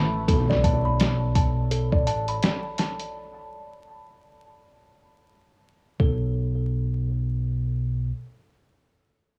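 Trip hop at 84 BPM in B minor, this brooding, smoky fragment is cut from a longer piece and carries a swung sixteenth-note feel over a home-recorded cassette sound with vinyl crackle and small room ambience. A round, punchy fingered electric bass sits up front with tube saturation, holding its low register from the start until 8.1 seconds. The sampler-style drum kit, compressed, pitched down and muffled, enters at 0.3 seconds with a thumpy kick, medium-tuned snare and hi-hat, also placed up front and colored by cassette tape. A delicate, slightly out-of-tune music box tinkles arpeggios through tape and dub echo, while a hammered, shimmering cimbalom offers a brief melody in the background during the opening moments. A very quiet electronic impact sounds over the B7 harmony before the chords drop away at 6.0 seconds, leaving the bass to carry the closing stretch.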